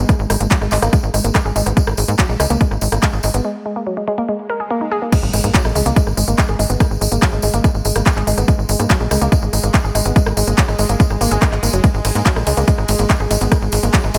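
Intense and alien, this psychedelic trance excerpt drives at 143 BPM in 4/4 on a G#5 chord, with an up-front punchy electronic kick, a tight, nasal sequencer bass, a woody wave-folded pluck riff carrying chorus and tape echo, a bubbling stepped-filter texture holding sustained chords in the background, a layered techno kit of smooth hats, claps, rim clicks, ride and crash, and a jingly tambourine, as a filter sweep running from the start and a break from 3.4 seconds lead through a background swell into the drop and impact at 5.1 seconds, all in a dry, close sound.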